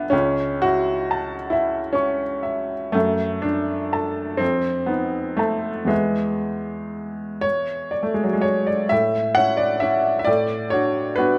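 A bright, woody upright piano sits up front from the very start, its audible action noise heard through close, detailed microphones, playing a nostalgic, dreamy romantic nocturne in A major at a slow, rubato 37-48 BPM in 6/8. The harmony drifts from A/C# through D/F# and a colorful F7 to E, then a new passage begins at 8.9 s, settling on A before a Bm7/A at 10.3 s. The intimate piano is bathed in a lush recital hall reverb of 1.7 s, and this short fragment, cut from a longer piece, lasts 11.4 seconds.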